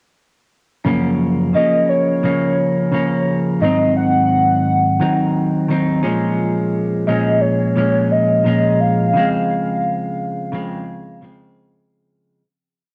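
Hazy, cassette-worn home recording with a damp booth ambience carries this short, nostalgic indie pop piece in Db major at 87 BPM, where a clean, compressed semi-hollow electric guitar strums slow barre chords up front through lush chorus, vibrato and plate reverb from 0.8 s, while a warbling, detuned lead of triangle and sawtooth tones sings a mellow, motif-based melody with tremolo from 1.5 s, before a fade-out beginning at 9.1 s.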